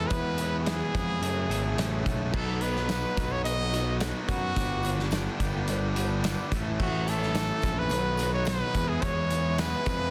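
A brilliant trumpet carries the melody up front in this upbeat, wistful indie rock excerpt at 108 BPM, its pop-style lines marked by vibrato and scooped notes over a growly, fuzz-laden picked bass and a loose acoustic drum kit with a punchy kick, medium-tuned snare and a pumping room sound. Behind them, a bright overdriven electric guitar and a very quiet, sludgy distorted guitar play riffs, a dark French horn section holds sustained chords in a classical style, and a distant, jingly tambourine joins at 2.6 s. The chords move from E6 through F#m7, B7, Gmaj7 and A, tuned to A4 = 437 Hz, with light reverb, small room ambience and a dense, heavily limited modern master.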